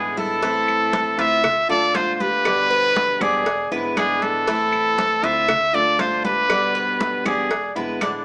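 A punchy, up-front solo trumpet with vibrato opens this nostalgic Cuban son and guajira excerpt, alongside a fingerpicked steel-string dreadnought guitar, metallic, double-strung tres arpeggios and a dark, thumpy pizzicato upright bass in the background. Round, low-tuned bongos and cowbell and soft-handed congas join at 0.2 seconds, and woody claves enter very quietly at 0.7 seconds, as the band cycles through Am, Dm, G and E7 twice. Moderate studio reverb surrounds the players, and the mix carries a small-speaker sound.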